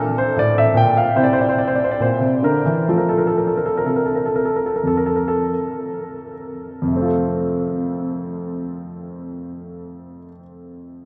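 In a rubato 4/4 that slows through its first 6.8 seconds at roughly 59-76 BPM, this serene, flowing fragment of a baroque-style classical suite movement in F major features a solo grand piano, present, polished and up front, moving from Bbmaj9#11 through C7 to F while a huge, wet reverb with an 8.1-second decay places it in a vast, echoing space.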